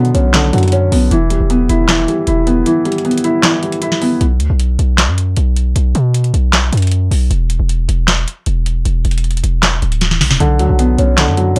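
A dry trap excerpt in B minor at 155 BPM with a half-time feel carries a dark, melancholic mood. A soft, intimate felt-muted upright piano plays short-sustained chords until 4.2 seconds and returns at 10.4 seconds, while a punchy, heavy 808-style bass with a noise layer hits hard and decays underneath. A booming analog drum machine with vintage 12-bit grit drives crisp snare, metallic hats and handclaps in a short room, its kick muted from 2.7 to 4.2 seconds, with a drum fill arriving at 10.0 seconds.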